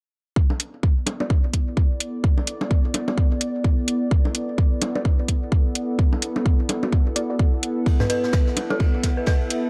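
A punchy, layered electronic kick drum sits up front from 0.4 s, driving this hypnotic, cool minimal techno excerpt at 128 BPM in B minor with a 16th-note swing, all resting on a single B minor chord. Metallic analog hi-hats share the foreground, while tape-warm electronic bongos and toms echo through delay in a large room, and a warbling, nostalgic lo-fi pad of detuned sawtooth and triangle tones breathes under chorus and sidechain pumping. Deep in the background, a muted, detuned dub chord stab plucks through phaser and delay, its filter sweeping across the whole passage as a notch moves within it. Near the close, from 8.0 s, an eerie, inharmonic FM bell riff hovers between A4 and B4 with chorus, delay and pumping, and a soft brushed jazz kit of ride cymbal and snare slips in at 7.9 s. The production is dark and cozy, set in a modest small room.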